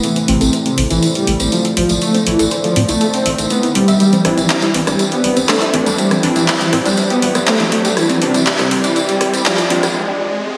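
A brassy, full-bodied synth brass carries the melody through this driving, dramatic melodic techno excerpt, joined by a soft supersaw second line, a moody dark analog pad, a tight sequenced arpeggio synth, a round deep analog bass and punchy brass stabs, all built on an up-front analog drum machine of congas, handclaps, hi-hat and rim click with a jingly, distant tambourine. A very quiet riser, a warbling, nostalgic lo-fi pad and filter sweeps on the arpeggios, an analog polysynth and the supersaw drive the build-up over a Cadd9 chord, with everything soaked in lush hall reverb for a dreamy finish. The music breaks at 10.0 seconds, leaving the dark pad and riser sounding until 10.6 seconds.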